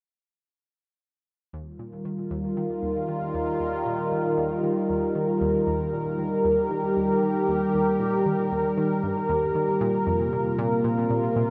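A straight, steady 4/4 pulse at 116 BPM drives this luminous, cosmic piece of sequencer-driven space music in Eb major, tuned slightly low to A4 = 437 Hz. From 1.5 s to 11.5 s, a sweeping, resonant pad sits up front with sustained chorused chords, its detuned sawtooth tone airy and evolving as a filter swell opens under a slow attack and long release. Beneath it, a round analog pluck plays a low riff, short and fast-attacked, blending square, triangle and noise with ring modulation, a filter sweep, chorus and analog delay. The harmony rests on Ebadd9 before shifting to Bbsus2 at 9.8 s, while a synth arpeggio sound fades in across the passage. A huge, wet reverb with a seven-second tail gives the dark, warm production its vast sense of space, and the recording is cut from a longer piece.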